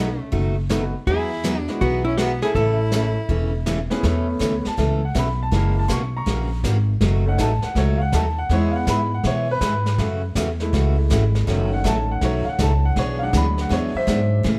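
A dark, clean hollow-body jazz guitar carries the melody over a biting, airy-bowed fiddle line, a bright, full-bodied picked acoustic guitar and a woody, up-front pizzicato upright bass in this playful, swinging western swing country cut at 162 BPM in A major, with a distant, roomy brush kit joining at 0.3 seconds and a clear, smooth vintage upright piano with long sustain entering at 0.7 seconds, then taking a solo from 4.0 seconds once the jazz guitar and fiddle have fallen silent, all under light reverb.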